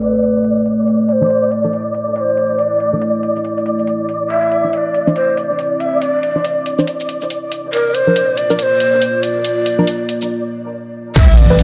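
A breathy, end-blown shakuhachi carries the melody up front, its bamboo tone unsteady with vibrato and chiff, trailed by dub echo over a dark, heavy passage of deep dubstep at 140 BPM in a half-time feel with swung sixteenths. Beneath it a deep, moody ambient pad sustains chords from Amadd9 through Dsus2 and Cadd9 to Bb, its wave-folded, ring-modulated body softened by chorus and coated in 12-bit sampler grit while a filter sweep moves across it. A muted, detuned chord stab enters at 1.2 seconds with a quick pluck, mellow phaser and echo, also under a sweeping filter, while a flickering granular texture hovers on a single high note and a quiet kit of crash, metallic hi-hats and shaker ticks along. After a brief break at 10.3 seconds, a punchy kick, an electronic impact and a round, wobbling sub bass land together at 11.2 seconds just as the cut ends. The overall sound is dry and gritty, with light reverb and a low-pass filter dulling the top end.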